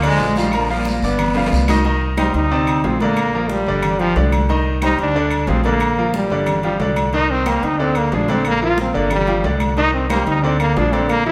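A straight-feel salsa groove of ringing agogo bells and timbales, high-tuned congas, woody claves and a raspy guiro that drops out at 1.8 seconds drives this fiery, danceable latin cut, where a tight, close-miked trombone section states the melody before a drum fill leads into a punchy, forceful solo trombone with scooped notes and vibrato from 2.2 seconds, over a bright, polished baby grand piano and a growly pizzicato upright bass in a wet stone room.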